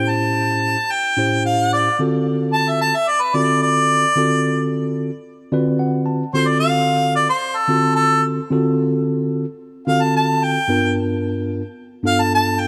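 Blues with a swaggering, soulful mood, this short excerpt cut from a longer piece moves at a straight, steady pulse in four. A harmonica carries the melody from start to finish in a jazz-inflected solo, its tone warm with light vibrato and scooped notes, sitting up front yet carrying a distant, roomy quality. A tine electric piano provides the accompaniment throughout, clean and heard through built-in speakers, spanning from low to high register and adding a brief fill at 5.2 seconds. The harmony rests on sharp-nine dominant chords, shifting from A7#9 to D7#9 at 2.0 seconds and moving to G7#9 near the close. Light reverb and small room ambience give the recording an intimate, close-quarters feel.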